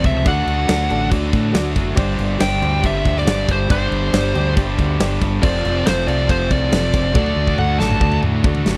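Swaggering and brooding, this short classic rock excerpt at 139 BPM pairs a compressed fuzz lead guitar melody with a sludgy, overdriven rhythm guitar riff, a growling fingered bass and a brighter overdriven guitar riff in the background, while a metallic, jangly tack piano adds vintage accompaniment. A big acoustic rock kit with a punchy kick, medium-tuned snare, crashes and toms drives the chords from D through Gsus4 and F, closing with a drum fill from 7.2 seconds. The sound is dry and close, in a 1970s studio style, with the lead guitar dropping out at 8.2 seconds.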